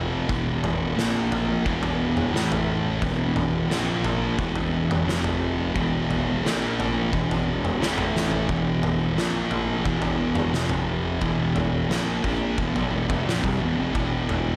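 An oversized, low-tuned drum kit sits up front in a bright stone room that pumps around it, its fat snare, punchy kick and toms sounding saturated and gritty. This is a sludgy, ominous stoner and doom metal excerpt at 88 BPM in a straight 4/4, cut from a longer piece and tuned slightly flat to A4 = 436 Hz. Two thick fuzz guitars drive the riff throughout, one warm and distorted at the front of the mix, the other darker and set further back. Beneath them, a fingered electric bass growls in the background, its overdrive and tube saturation giving it a bright, amped edge. The riff keeps returning to an E5 power chord between stabs of A#5, A5 and F5, and the drums break into a short fill at 8.1 seconds. Light studio reverb wraps the whole heavy, lumbering groove.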